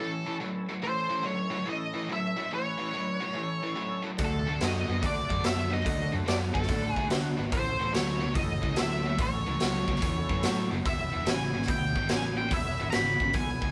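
Blues rock with a southern rock lean, this swaggering, driving power-trio cut swings its eighth notes in a steady four. An up-front octave-fuzz lead guitar, dark and distorted, carries the melody from the first second, while a tight, bright, double-tracked distorted guitar picks a low riff beneath it. In the background, an overdriven tonewheel organ holds thick, gritty sustained chords with key click, second-harmonic percussion, chorus vibrato and a slow rotary speaker. At 4.2 seconds a punchy, amped fingered electric bass and a raw garage drum kit join in, the kit up front and saturated, with a punchy kick, a medium-tuned snare and hi-hat ringing in a bright stone room that pumps, its top rolled off. The band sounds as if it is playing live in one room under light reverb, moving from A to D, back to A, and on to E in this cut taken from a longer piece.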